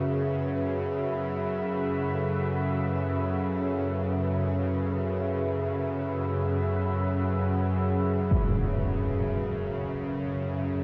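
Dark ambient drone in free time with an unsettling mood, built on a tense, string-like bowed drone held up front with vibrato, beneath a deep, moody pad sustaining an F#9sus4 chord with chorus and shimmer reverb as it fades out across the 10.8 seconds, while a very quiet bronze singing bowl rings with slow metallic beating and a huge, muffled impact lands at 8.3 seconds, the whole sound set in a long cathedral reverb and dulled by cassette tape.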